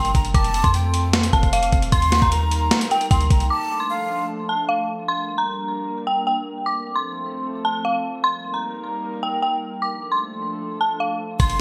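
Hip hop with a trap edge, this short cut from a longer piece moves in a half-time feel and carries a melancholic, menacing mood. An eerie, inharmonic FM bell sits up front with the main melody throughout, coloured by chorus, tremolo and delay, while a breathy jazz flute with vibrato and lifted highs adds an expressive second line, also with delay. Beneath them, a warbling, lo-fi tape-like pad holds nostalgic sustained chords through chorus and its own reverb, cycling through F, Eb, Dm and Gm. A gritty, compressed sampler-style kit with a thumpy kick, high-tuned snare and hi-hat, treated with gated reverb, drives the opening alongside a deep, boomy 808-style sine bass, and both drop out at 3.5 seconds for a break. The flute stops at 4.3 seconds, leaving bell and pad alone until drums, bass and flute return briefly at 11.4 seconds, all within a bright 1980s-style digital production with light ambience.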